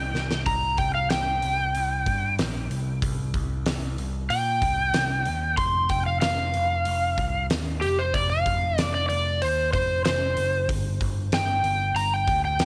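A gritty overdriven slide guitar and an overdriven electric bass open this smoky blues rock and southern rock excerpt together, with a huge arena drum kit entering on a quick fill at 0.1 seconds. At a straight 94 BPM in 4/4, the slide guitar carries a solo across the whole passage, reaching from G4 up to C6 with a fingered, warm tone that sits up front. Beneath it, the picked bass is bright and growly, amped and punchy in the low register between F1 and Bb2. The drums have an acoustic big-room sound, with a fat snare, a punchy kick and hi-hat. The harmony moves from C5 to F5 at 5.6 seconds and on to G5, all wrapped in light studio reverb.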